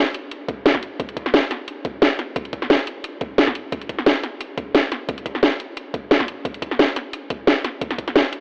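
This excerpt of drum and bass runs at 176 BPM in 4/4, with a slight swing on the sixteenths that loosens the groove. The garage drum kit carries the rhythm from 0.1 seconds, its electronic, layered hi-hats and snare sitting up front, with a cracking snare and bright hats set in a small room reverb. A sampler-style electronic kick drum enters at 0.5 seconds, compressed, gritty and thumpy, sitting well beneath the kit in level and sharing the same small room. Light reverb and a telephone-like tone colour the overall sound. Despite the fast tempo, the mood feels dreamy and soulful.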